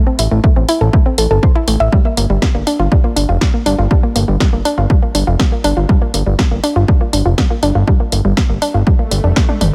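A woody, nasal pluck opens this dark, melancholic melodic techno excerpt at 121 BPM, spinning arpeggios between G3 and E5 through chorus, tape echo and sidechain pumping. A fat, detuned sawtooth bass joins almost at once, thick and up front with a filter sweep and its own sidechain pumping. A punchy analog drum machine supplies hi-hat, snare and toms, while a tape-warm electronic kick drives the straight 4/4 pulse from the front of the mix. The harmony moves from A minor to G minor seventh in a dry, close-sounding space. An electronic swell appears in the background at 9.0 seconds, and a drum fill lands at 9.5 seconds.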